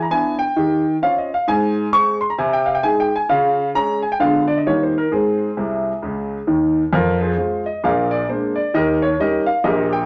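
A clear, up-front grand piano plays solo in this playful, exuberant stride jazz fragment cut from a longer piece, swinging in four through its chord changes with a fill at 5.6 seconds before moving into a new section at 6.9 seconds, all set in a wet studio reverb.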